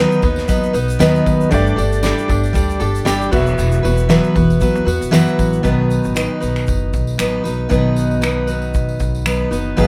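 Easy-going and sunny, this acoustic pop passage moves at 116 BPM in 4/4 with a light sixteenth-note swing, led by a full-bodied, up-front picked jumbo steel-string guitar over a woody pizzicato upright bass and a loose indie drum kit with punchy kick, fat snare, dark cymbals, finger snaps and shaker in a pumping room, while a jingly tambourine and a clear, polished upright piano sit in the background until the piano drops out at 5.7 s as the chords settle on B, all under a light reverb.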